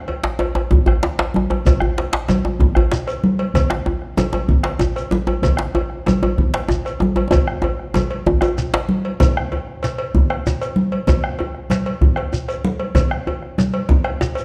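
A metallic, band-limited cowbell and a soft-handed djembe in the background open this festive, powerful West African drum ensemble at 128 BPM in 12/8, joined at once by bright, damped congas struck with hard hands, an up-front second djembe and a deep, close bombo, with a grainy, mellow shekere entering at 1.7 s. A drum fill from 7.3 s leads into a new section, and the up-front djembe stops at 8.9 s. The sound is dark, set in a moderate recital-hall reverb, and the recording is cut from a longer piece.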